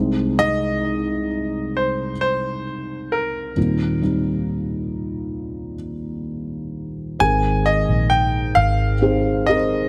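A tender, emotional pop ballad in Ab major moves at a slow 66 BPM in a straight 4/4, heard as a short passage cut from a longer piece. A felt-muted upright piano carries the accompaniment from the start, its thick-felt tone soft, boxy and intimate, with audible action noise sitting up front in the mix. From 0.4 seconds a bright grand piano takes the melody in a higher register, its brilliant, polished tone present and close, with short sustain. At 7.2 seconds, as the harmony settles on Abadd9, a vintage muted fingered electric bass enters low, its foam-muted, amped sound dark and round. Light reverb gives the pianos and bass a gentle sense of space.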